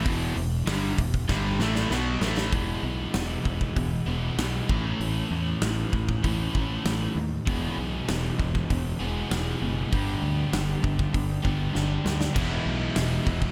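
Three overdriven electric guitars and a growly fuzz bass open this sunny, driving classic rock excerpt on an E5 power chord, with a crunchy guitar up front, a dark, compressed one in the background, and a bright, double-tracked distorted guitar that drops out at 2.5 seconds and returns at 12.3 seconds. A big, natural-sounding acoustic drum kit sits up front with a punchy kick, a medium-tuned snare, and bright crash and splash cymbals, and it plays fills at 1.3 and 11.7 seconds. The riffing moves through E, A, E and G before landing back on E, all under a light reverb.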